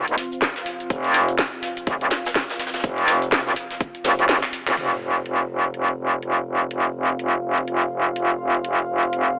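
A saturated, metallic wobble bass sits up front in this swaggering, bouncy bass house excerpt with a swung sixteenth-note feel, pumping against a punchy electronic kick that drops out at 3.9 s, a house kit of cracking snare, handclaps, cabasa and filtered hats, a very quiet brushed acoustic kit, and a deep, moody sawtooth pad tucked in the background, before a faint sub drop lands at 4.8 s, all colored by a lush hall reverb and a telephone-like tone.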